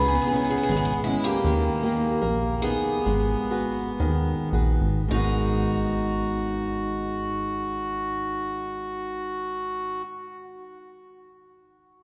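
Drenched in a long cathedral reverb, this brief passage, cut from a longer fado-style ballad, sounds as if it were captured in a church or concert hall, giving it a longing, mournful air. A picked twelve-string acoustic guitar carries the melody with a bright, shimmering, octave-doubled tone, while a reedy, single-reed accordion, clear and up front, sings a second line beneath it. A fingerpicked flamenco guitar supplies the accompaniment across the broadest range of the ensemble, and a punchy, plucky analog bass with a fast attack, a decaying filter pluck and a mellow, wave-folded edge anchors the low end. The pulse is free and rubato in a duple metre, easing into a gradual slowdown from 1.4 to 5.1 seconds as the harmony moves from C#m7 through D# to G#m7. A new section begins at 5.1 seconds, with all four parts sounding together from start to finish.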